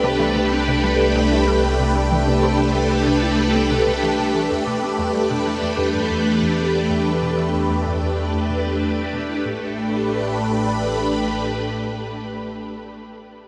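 In a straight 4/4 pulse, this cosmic, mysterious stretch of sequencer-driven ambient space music, cut from a longer piece, sets a swirling, up-front string machine with ensemble chorus and phaser holding sustained chords over an evolving, chorused analog drone bass that stops at 11.3 seconds, while a squelchy, resonant blip pluck with phaser, lush chorus and delay plays a background riff until 9.7 seconds, a very quiet, ringing Celtic harp spins arpeggios, a synth arpeggio sound fades out by 9.4 seconds, and a huge, wet reverb envelops it all as the harmony moves from Cmaj7(no3) through Em7 to A9sus4.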